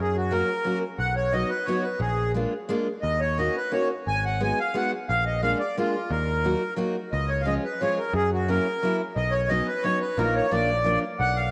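Musette in a brisk 3/4 at 177 BPM, nostalgic and bittersweet, with a reedy accordion carrying the melody up front with slow beating, a picked steel-string acoustic guitar adding accompaniment with audible finger squeak from 0.3 seconds, and a punchy, direct electric bass with tube saturation anchoring the low end, all set in a moderate plate reverb as the chords move from Gb through Bb7 and Ebm7 to a closing Bbsus4 resolving to Bb.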